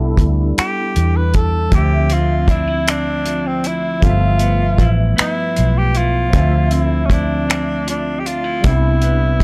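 Slow six-eight R&B with a late-night, yearning mood, built on a barky, bright tine electric piano through a combo amp with ensemble chorus and a round, punchy, foam-muted vintage fingered bass sitting up front. A cloth-damped drum kit of finger snaps, hi-hat and a tight, thuddy kick enters at 0.2 seconds, saturated and dark with a rolled-off top, before a breathy, whispered tenor saxophone carries the intimate melody from 0.6 seconds with vibrato, soft attacks and scooped notes. A clean, picked electric guitar adds a second line from 1.7 seconds, its pitch drifting in a warbly way through analog delay, and the recording has a small, dry room sound with a gritty hardware character.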